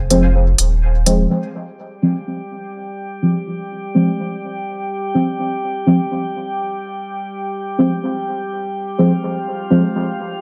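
Nocturnal and hazy, this fragment of dub techno moves at 125 BPM in a straight 4/4, resting on an F minor chord. A round, mellow sub bass and a smooth electronic hi-hat open the piece together, both up front, before dropping away by about 1.3 seconds. A dark, detuned chord stab in the low-middle register carries through almost the whole passage. Its fast attack decays through chorus, phaser and dub echo, while a filter sweep and moving notch colour the tone. From 1.9 seconds a calm, glassy texture of drifting overtones emerges on a slow attack, its long release blurred by chorus and built-in reverb. Light reverb frames the mix, leaving the stab and the airy harmonics to hold the space.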